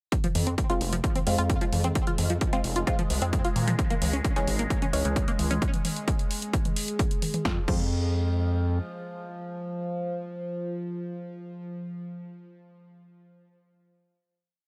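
The recording sounds dry and close, with little room around it, as a dark, hypnotic piece of driving peak-time techno in a straight four-on-the-floor pulse. An overdriven, heavy electronic kick sits up front beside a gritty, aggressive synth bass built from square and sawtooth tones with oscillator sync, playing off the beat and pumping against the kick. A punchy, overdriven drum kit adds programmed closed and open hats, a backbeat snare, mid toms and crash, while a tight, nasal sequenced synth with detuned sawtooth, chorus, tube saturation and tape echo runs a six-step loop that drifts against the bar. Deeper in the background, a muted, filtered dub chord stab moves one shape in parallel through sparse, echoing hits with phaser, and a slow-attack, wave-folded drone with sweeping overtones, chorus and its own reverb breathes underneath. The drums and sequence drop out at 7.8 seconds, and the bass stops at 8.8 seconds, leaving the stab and drone to hold the final F minor chord until the stab ends at 11.9 seconds.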